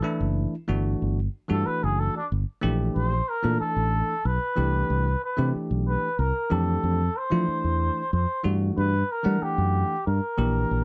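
A dry, close recording with a 1970s studio character and light reverb opens this excerpt from a funky, soaring electric jazz fusion piece in a straight 6/8. A bell-like, bright tine electric piano accompanies from the start, and a round, punchy fingered electric bass enters at 0.2 seconds, sitting dark and up front beneath chords that move from A7sus4 through Bbmaj7, Cmaj9 and Fmaj9 to Gsus2. From 0.7 seconds a trumpet with a cup mute carries the melody as a solo: a veiled, breathy, intimate voice with vibrato and a soft attack, trailed by a slapback echo.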